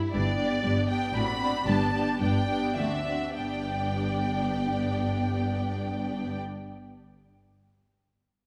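A warm cello section opens this cheerful, graceful passage from a quick classical-period movement for string orchestra in G major and 3/4. At 0.1 s the double basses join on the bass line, with a viola section in expressive accompaniment and two violin sections: one up front carrying the melody with focused vibrato, the other lush and smooth-topped on a second line. The rubato tempo moves between 98 and 118 BPM, slowing through the first 3.4 s, and the bowed ensemble sits in a wet scoring-stage reverb.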